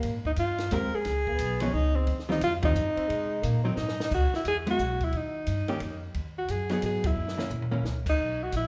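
Late-night and moody, this short cut from a longer small-group swing and bop jazz piece moves in 3/4 at 177 BPM, with a clear, up-front alto saxophone carrying the melody from 0.3 s over a breathy, subtoned tenor saxophone second line that drops out at 4.1 s as the music settles into C# minor, while a woody, growly pizzicato upright bass, a dry compact cocktail kit with dark cymbals, a high-tuned snare and punchy kick, and a dark, clean, picked hollow-body electric guitar fill out the sound, heard from further back in a large studio with moderate reverb, band accents at 2.6 s and 7.0 s, and drum fills at 3.8 s and 7.2 s.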